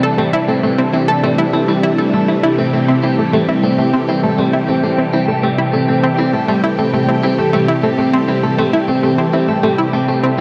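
A straight, steady 4/4 pulse carries this mysterious, expansive stretch of sequencer-driven ambient space music, which is cut from a longer piece and rests on a single Am7 chord for its 10.4 seconds. Up front, a swirling, vintage string machine holds sustained chords through ensemble chorus and phaser, while a round analog pluck with a fast attack and a sub octave plays a bright riff through chorus and analog delay. A slightly broken-up, compressed electric guitar adds picked arpeggios through its own analog delay, and the dark production is soaked in a huge reverb that gives the mix a cavernous depth.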